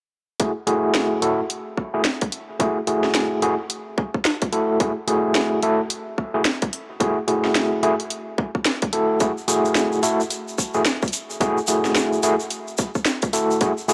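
A barky, overdriven tine electric piano plays fast-tremolo stabs through a combo amp, pumped by sidechain and colored with low-pass filtering and tape echo, over an up-front, cracking-snare and hi-hat drum-and-bass kit and a tight, overdriven electronic kick in this playful, gritty, swung glitch hop cut from a longer piece, with a grainy, vintage egg shaker joining at 9.2 seconds amid light digital ambience.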